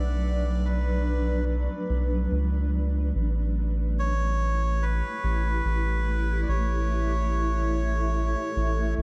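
An echo-heavy studio ambience surrounds this short ambient dub passage, cut from a longer piece, which moves at a slow 72 BPM in 4/4 with a gentle 16th-note swing. The mood is meditative and spacious, resting on a Bm7 chord before shifting to A7 at 3.1 seconds. Underneath, a soft dub sub bass sits up front, deep and round, holding sustained low notes throughout. A granular cloud pad fills the middle and upper register with blurred, evolving sustained chords, its detuned unison tone drifting through built-in reverb. Above it, a reedy, breathy melodica carries a brief melody in a narrow upper range, its dub echo trailing behind each phrase until it stops at 8.9 seconds.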